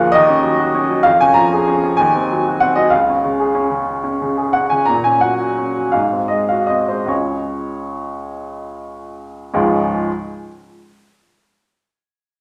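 Warm and lyrical, this romantic character piece for solo piano unfolds in Db major at a gently rubato 6/8, moving in slow dotted-quarter pulses around 48-66 BPM. A clear, woody upright piano sits up front, ranging from Db2 to Bb5 and bathed in a wet recital hall reverb, drifting through chords such as Ebm7, Cdim/Eb and Ab7 before settling on Db. The tempo slows from 3.9 to 9.5 seconds, and the piano stops at 10.1 seconds in this fragment cut from a longer piece.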